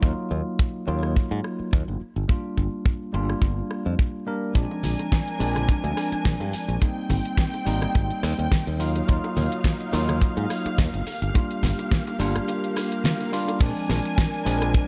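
Nu-disco with a sunny, feel-good lift, this cut from a longer piece moves at 106 BPM in 4/4 with a light 16th-note swing, centred on Bb mixolydian and cycling through chords such as Ebmadd9, Gm7, Bb7 and Abmaj7. From the start, a tight, dry acoustic kick with a rolled-off top sits up front beside a growly, punchy fingered electric bass, while a clean tine electric piano, heard through its built-in speakers, carries the accompaniment with a low-pass filter and slapback echo. A produced, layered electronic pop kit joins at 1.0 seconds with a fat snare, metallic hi-hats, rim clicks and crash cymbal. Around 4.6 seconds a dark, woody studio string section adds lush bowed chords with vibrato and sidechain pumping, and very quiet close bongos and congas slip in underneath. A faint electronic swell builds from 12.7 seconds into a drop at 13.6 seconds, all set in light studio reverb.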